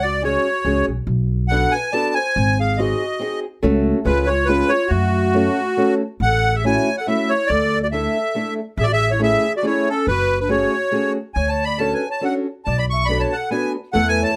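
A swung waltz in three lifts this nostalgic, whirling musette fragment from a longer piece, with a reedy, sweet accordion carrying the melody close and dry at the front, its light tremolo tuning shimmering over a dark, classical-style clarinet second line. Underneath, a pizzicato upright bass with woody steel strings anchors the low end while a fingerpicked, ladder-braced acoustic guitar with old strings adds boxy accompaniment from 0.2 seconds. At 6.2 seconds the harmony brightens into a major-key section, all set in light reverb.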